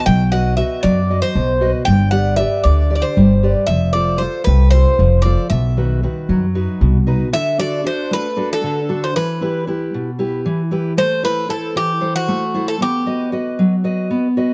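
Moody and brooding, this excerpt of Greek folk from a bouzouki band moves briskly at 231 BPM in eighths through a straight 7/8, its chords running from B through G, F, Em and Am before landing back on B. Up front, the picked bouzouki carries the melody with a metallic double-string ring and some octave-doubled strings until 13.3 seconds, while a fingerpicked steel-string acoustic guitar accompanies throughout, finger squeak audible. A thumpy, woody pizzicato upright bass anchors the low end only until 7.2 seconds, all of it in a dark, dry production with little reverb.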